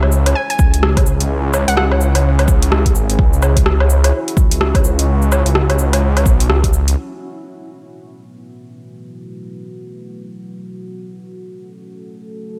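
A swung 16th-note groove at 127 BPM in 4/4 drives this melancholic, nocturnal future garage excerpt in C# minor, tuned slightly flat. An overdriven deep house kit of metallic hats, cabasa, rim click and woodblock sits up front, joined by a deep, overdriven electronic kick, both carrying a large-room character. Beneath them, a menacing, saturated detuned saw bass with a filter swell pumps against the sidechain. A hollow, bouncy square-wave pluck adds a brief, mellow high figure colored by chorus and analog delay. Underneath it all, a deep, warbling vintage pad sustains moody chords from C#m through B7sus4 to F#m, pumping with built-in reverb and chorus. By 7.0 seconds the bass and drums drop away, leaving the dark pad alone until the cut at 12.6 seconds in an otherwise dry mix.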